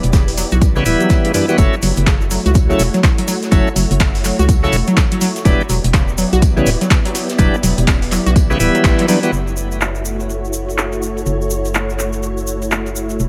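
Set in a small, lightly reverberant room under a bed of vinyl crackle, this smooth deep house excerpt pairs a hollow, dark, organ-like FM bass with silky, warbling string-machine chords, a round, detuned analog pluck arpeggio with digital delay, shouting, lightly overdriven tonewheel organ stabs through a slow rotary speaker and tape echo, a deep, up-front electronic kick, a filtered deep house kit of handclaps and metallic hats, a very quiet acoustic soul kit of snare, hi-hat and tambourine, and a grainy, dry egg shaker, with a band accent at 8.8 seconds, after which the kick and pluck drop away around 9 seconds and the organ and soul kit at 9.3 seconds.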